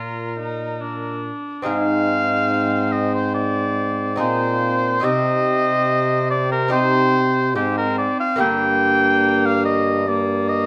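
A clear oboe carries the melody from the very start of this short cut from a renaissance-style consort dance, joined at once by a distant, gut-toned viola on a second line, a delicate fingerpicked lute with bright double strings, and a mellow, smooth-topped trombone holding the bass. The mood is rustic and solemn at a steady 71 BPM in 4/4, tuned to A4 = 436 Hz, with the harmony moving through Bb, Ab, Cm and Gm. Oboe and trombone sit up front with light vibrato, while light reverb frames the consort.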